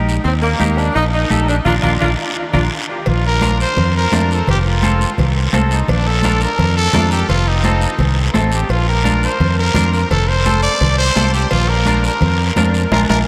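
Festive and danceable, this cumbia excerpt opens with a vibrato-laden saxophone section carrying the melody with delay over clean, hollow-bodied guitar with subtle chorus, a round, dark, up-front fingered bass, raspy dry guiro and bright, high-tuned congas, then after a band accent and drum fill a gritty, growling trumpet takes an up-front solo with delay from 3.1 seconds as very quiet ringing cowbell and timbales join, all bathed in a dreamy, huge ambient reverb.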